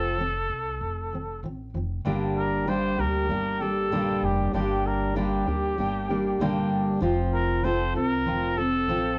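A lightly swung sixteenth-note lilt in 4/4 carries this tender, reflective slice of acoustic pop, cut from a longer piece. A fingerpicked steel-string acoustic guitar with a full-bodied jumbo tone sits up front as the accompaniment, while a pizzicato upright bass adds a woody, dark low end beneath it. Over them, a breathy solo trumpet sings the melody with a soft attack, vibrato and an intimate, whispered quality. The harmony opens on F, moves to G minor at 2.1 seconds, and returns to F at 7.0 seconds, with all three instruments playing throughout. A moderate studio reverb surrounds the trio, and a worn cassette-tape character with warbling pitch drift gives the recording a nostalgic, aged feel.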